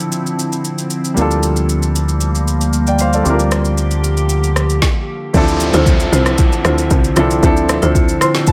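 A straight 4/4 amapiano groove at 115 BPM sets a late-night, deep mood in D minor, with an up-front, produced drum kit of deep kick, woody snare, rim click and shaker under a natural baby grand piano and a glassy, ethereal FM pad that carries ensemble chorus, built-in reverb and sidechain pumping across Dm9 and Gm9/D chords. A round, dark fingered electric bass holds D2 until a brief stop at 4.8 seconds, and the drop at 5.3 seconds brings a tight, percussive log drum bass with a punchy, fast attack that decays, along with a low-level electronic downlifter, followed at 5.7 seconds by band-limited vintage marimba stabs with delay. A short grand piano fill at 8.0 seconds closes this cut from a longer piece, all set in light reverb.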